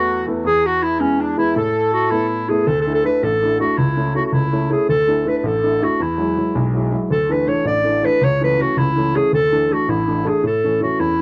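A 6/8 jig rhythm at 108 BPM drives this bright, cheerful Celtic folk piece in A major, where a warm, roomy classical-style clarinet carries the melody up front over a clear, woody, slightly detuned upright piano with long sustain, while a reedy, band-limited accordion with tape echo adds a second line only until 2.3 seconds, all in a dry, close 1970s-style studio sound with small room ambience.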